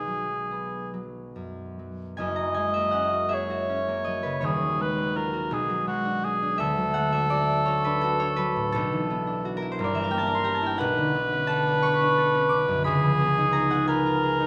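Cor anglais and concert harp sound together from the first moment in this pastoral, dreamy classical duo with an impressionist colour, taken from a longer piece. The tempo moves freely in 6/8 with a rubato feel, hovering between 46 and 60 beats per minute counted in dotted quarters, and the instruments are tuned a touch low to A4 = 438 Hz. Up front, the solo cor anglais carries the melody with a warm, smooth top, staying in a compact range from F#4 to D#5 in a graceful classical manner. The fingerpicked harp sits equally close, its bright, ringing tones spanning from deep D#1 up to D6 as it supplies the accompaniment. After a brief opening on B5, a new passage begins at 2.2 seconds and drifts through lush, colourful harmonies such as F#add9, D#m11, Bm6 and Gm6 before settling on C#9 at 12.9 seconds. A recital hall reverb with a 1.4-second decay bathes the duo in a soft, airy glow.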